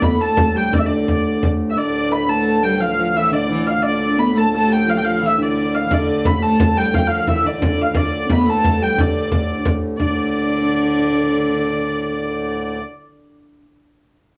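Ancient and mysterious, this medieval dance excerpt in D dorian moves in a straight 6/8 at 117 BPM, speeding up through to 12.0 seconds. A dark, nasal hurdy-gurdy carries the melody up front with plate reverb, while a rich, airy-bowed viola da gamba and a thumb-plucked concert harp with tape echo, set in the background, supply second lines over a breathing, mellow pedal harmonium drone. A close, dry frame drum plays from 0.0 to 1.7 seconds and returns at 5.9 seconds, all within a small room ambience, with the harp ringing on alone until 13.5 seconds.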